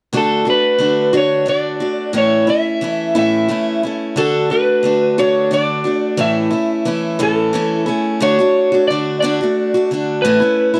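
A dark, warm studio sound with moderate reverb frames this short rock cut, taken from a longer piece, which has an open-road, jangly mood at 59 BPM in a straight 6/8. A bright, boxy parlour acoustic guitar sits up front, picking out the accompaniment over D and A chords, while an electric slide guitar, slightly broken-up and played with fingerpicks, carries the melody through an analog delay. The pair shift into a new section at 8.2 seconds and play on together to the end at 10.8 seconds.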